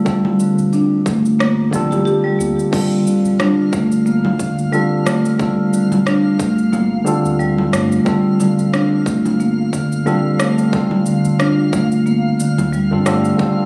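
Captured on a phone in a lightly reverberant room and then treated with studio reverb and compression, this earthy organic downtempo excerpt in G minor moves at 90 BPM with a gentle 16th-note swing over a Gm7 chord. An up-front, clean tine electric piano carries the accompaniment through tape echo, sidechain pumping and a filter sweep, while a woody soft-mallet marimba plays arpeggios with its own tape echo and a round sine sub bass sits deep in the background. A tight, overdriven electronic kick sits up front in the drums alongside a small-room kit of congas, crash cymbal, rim click and shaker. A twinkling granular shimmer enters at 3.2 seconds, and an ethereal, airy pad is barely audible only at 13.6 seconds.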